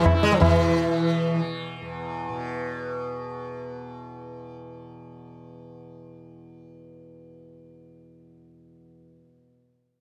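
In a straight three-beat metre, this short Hindustani classical fragment opens with a devotional, meditative calm: a round, up-front sitar with buzzing sympathetic strings carries the melody until 1.4 seconds, while a high-tuned, ringing tabla sounds close by only briefly near the start. Beneath them a softly plucked tanpura holds a shimmering drone, quieter than the sitar, and continues alone until 9.4 seconds. Close, detailed microphones and light reverb keep the acoustic instruments intimate and clear.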